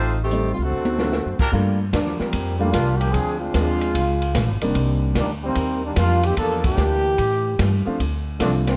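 Big band swing jazz in 4/4 with a swung feel and an energetic, joyful mood, cut from a longer piece. It opens with a warm saxophone section carrying the melody with vibrato, alongside a tight, vintage-toned trumpet section playing stabs, both of which stop by about 1.5 seconds. A woody pizzicato upright bass sits up front throughout, while an open jazz drum kit recorded in a small room, with dark cymbals, a boomy kick and a rolled-off top, plays a fill at 0.7 seconds. A bright, loose trombone section with light vibrato enters at 1.9 seconds and solos through to the end. A natural-sounding baby grand piano supplies accompaniment, drops out partway through and returns near the close, all bathed in light reverb.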